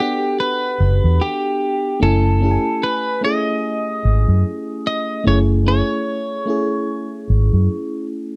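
Neo-soul R&B excerpt with a soulful, sultry swing, where a bright, slightly broken-up picked electric guitar carries the melody over a phased FM electric piano with a noise layer, a fast attack and a decaying tone, while a dark, round, foam-muted vintage fingered bass enters at 0.8 seconds, punchy and up front in a dry, close 1970s-style studio sound moving from a rootless Em9 to F#m9.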